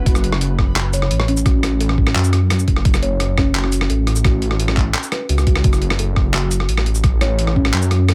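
A deep, rumbling detuned saw bass sits up front, its dark unison voices beating against each other under tube saturation, and it opens the clip alone at 0.0 s. This half-time drum and bass fragment, cut from a longer piece, feels heavy and cinematic, and it drops straight in at 0.1 s on a single minor chord. A woody, hollow-sounding kalimba plays soft, mellow arpeggios with fingertip plucks, trailed by a digital delay. A gritty, sampler-style drum kit of handclaps, hi-hat, rim click and shaker is compressed, overdriven and re-recorded in a small room. Alongside it, a thumpy electronic kick with the same overdriven grit drives the half-time feel until 7.6 s, and a light reverb gives the mix a touch of space.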